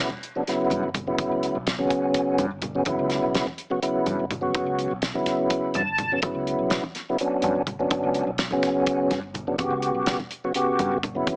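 A lightly overdriven tonewheel organ with slow rotary speaker, chorus vibrato and audible key click sits up front in this soaring, slick electric jazz fusion excerpt in 7/8 at 250 BPM in G lydian, opening on a Gmaj7 and breaking into a brief fill at 5.5 seconds over a dark, round, punchy fretless bass, low-tuned congas with a thick skin under soft hands, and a dry, damped 70s drum kit with a fat snare and tight kick, the whole mix set in light reverb with a small speaker sound.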